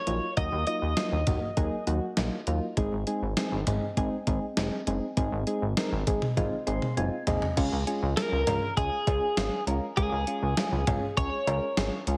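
Bright and nostalgic, this synth-pop excerpt moves at 100 BPM in a straight 4/4 in Db major, built on a gated 80s digital drum machine with a thumpy kick, gated-reverb snare, hi-hat, cowbell, toms and crash, a glossy, nasal chorused synth bass, and soft, round electric-piano-like synth keys treated with chorus and phaser. A clean, picked twelve-string electric guitar with slapback echo carries the melody from 0.0 to 1.8 seconds and returns at 8.2 seconds, after a drum and keys fill from 6.4 to 7.6 seconds leads the chords from Ebmadd9 and Ab to Db. The mix sits in a moderate plate reverb with a heavily compressed, radio-like finish.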